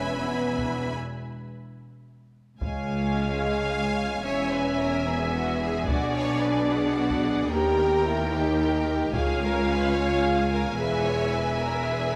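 A warm French horn section holds sustained chords at the front of this dark, epic orchestral film cue in 6/8. Beneath it, rich violas carry the accompaniment, while focused cellos in the background and clear double basses anchor the bass. Hard-stick taiko drums in a small room enter at 0.6 seconds, and after a brief break the distant, lush violins take up the melody at 2.6 seconds, with a second intense, vibrato-laden violin line rejoining at 3.4 seconds, all set in the wet reverb of a scoring stage.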